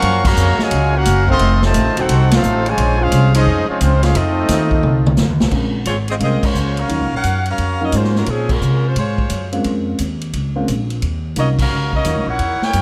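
A mellow, tightly voiced trumpet section with light vibrato carries the melody of this brassy big band swing excerpt, and a brilliant trombone section plays a second line beneath it until 5.2 seconds, overlapping a drum fill that begins at 4.8 seconds. From 5.5 seconds an intimate concert grand piano with audible action noise joins as accompaniment, and a bright, smooth-topped saxophone section takes over the melody from 5.9 seconds. Throughout, a woody pizzicato upright bass sits up front, while a distant, roomy drum kit with dark cymbals and a punchy kick swings behind band accents in light reverb.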